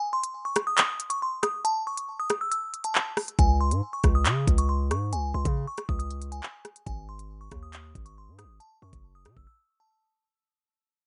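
A half-time drill groove at 138 BPM in 4/4 drives this menacing, tense hip hop fragment in C# harmonic minor, cut from a longer piece and fading across its whole length. An electronic drill kit of knocking kick, crisp hi-hats, handclaps and rim clicks sits up front from 0.2 seconds. A delicate, tinkling FM synth tine bell carries the melody from the very start, high in its register, with fast-decaying notes thickened by chorus, softened by a low-pass filter and trailed by delay. At 3.4 seconds a heavy, saturated 808-style bass drops in beneath it, aggressive and distorted with a noise layer, as the harmony moves from C#5 to G#5 and then F#m. The drums and bass stop at 9.5 seconds, leaving the bell briefly alone. The sound is dry and dull-topped, like a rough home demo mix.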